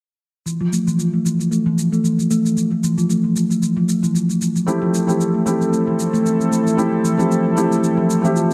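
A steel tongue drum opens at 0.5 s, struck with rubber mallets in round, ringing arpeggios that sit up front, mellowed by a low-pass filter and trailed by delay, while a faint, overdriven electronic shaker sits beneath it. This is organic downtempo at 114 BPM in 4/4, with a gentle 56% swing on the sixteenths, tuning set to A4 = 444 Hz, and harmony resting on an Fmaj7 chord. At 4.7 s a felt-muted upright piano joins with intimate accompaniment, close and muffled through thick felt, roughened by vintage 12-bit sampler grit and given its own delay. An analog pad enters at the same moment, holding smooth, detuned sawtooth chords with a soft attack and a touch of chorus. A moderate, lush hall reverb of 2.1 s surrounds the parts, lending the warm, earthy mood a sense of space until the passage, cut from a longer piece, ends at 8.5 s.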